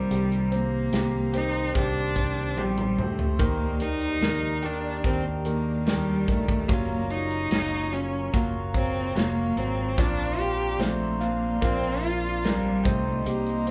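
Heartfelt and hopeful, this slow pop ballad moves at 73 BPM in a straight 4/4, heard as a short cut from a longer piece. A clear, focused solo cello carries the bowed melody up front with vibrato, while a bright concert grand piano with a brilliant top, deep bass and short sustain supplies the accompaniment. Behind them, a glass harmonica holds sustained chords with a pure, ethereal tone, slow attack and audible beating, and a clean, direct-recorded electric guitar picks compressed arpeggios in the background. A growly, amped fingered electric bass anchors the low end, and an acoustic studio drum kit, up front with a tight kick and medium-tuned snare, enters at 0.1 seconds and plays a fill from 2.6 to 3.4 seconds. The harmony moves from Cm7 through Ebmaj7, Gbmaj7 and Bbadd9 before returning to Cm7, all set in a moderate large-studio reverb that gives the feel of a band playing together in one room.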